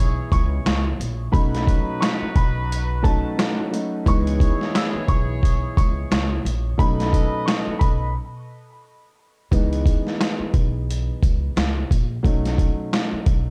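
A swung boom-bap groove at 88 BPM in C# minor drives this reflective, dark hip-hop excerpt, with a gritty, pitched-down sampler-style drum kit up front, its thumpy kick and high-tuned snare set against hi-hat, while a woody, growly pizzicato upright bass holds the low end throughout. A mellow grand piano with audible action noise carries the C#m7 to B7 accompaniment through a cassette-tape haze, as a smooth upright piano melody and tight, lightly vibratoed horn stabs, both treated with tape echo, play until 8.1 seconds. A break follows at 8.2 seconds before a new section begins at 9.5 seconds, all in a dry, dark production with little reverb.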